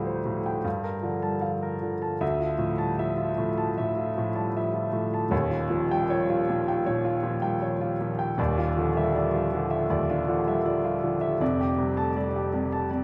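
A warm, intimate concert grand piano, up front with audible action noise, deep bass and long sustain, plays a nocturnal, mysterious impressionist solo in D minor at a rubato 78 BPM in 4/4, tuned to A4 = 438 Hz, ranging from Eb1 to A5 through chords such as Dm7, Gm9, Eb9 and a closing F69 at 11.4 seconds, all set in a wet concert hall reverb across this 13-second fragment of a longer piece.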